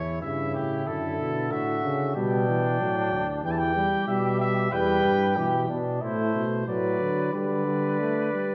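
A straight 4/4 pulse at 92 BPM drives this stately, joyful classical canzona for brass ensemble in E minor, an imitative passage cut from a longer piece. An up-front trumpet carries the melody above a flugelhorn with light vibrato on the second line, a mellow, smooth-topped trombone in accompaniment and a roomy bass trombone anchoring the bass, all four playing together from 0.0 s to roughly 8.5 s. A wet scoring-stage reverb places the trumpet, flugelhorn and bass trombone at a distance as the harmony moves from A through D/F# and G/B to Em, Am and a closing Dsus4.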